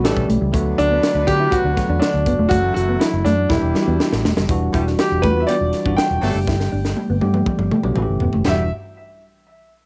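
Nocturnal and urban, this polished 1980s jazz-funk pop piece sets a clear, up-front concert grand piano melody over a bell-like tine electric piano with subtle chorus, a dark, foam-muted fingered electric bass, a mellow background electric guitar riff and a background horn section with vibrato and octave doubling, while a crisp fusion drum kit with a high-tuned snare and punchy kick plays fills at 3.5 and 6.5 seconds, all in a lightly reverberant home cassette recording.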